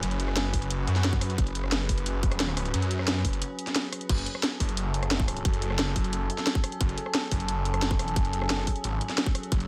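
A snarling, detuned sawtooth bass growls up front with distortion and overdrive, pumping against the sidechain through this aggressive, dark technical drum and bass drop cut from a longer piece. Beneath it, a metallic, inharmonic FM drone holds eerie, nasal chords with chorus and its own reverb, while a tight electronic kick enters at 0.5 s over a layered kit of cracking snare, rim click, hi-hat and crash that plays from the start. A brief break at 3.4 s resets the drop at 4.1 s, and the mix stays dry overall apart from studio reverb on the drums.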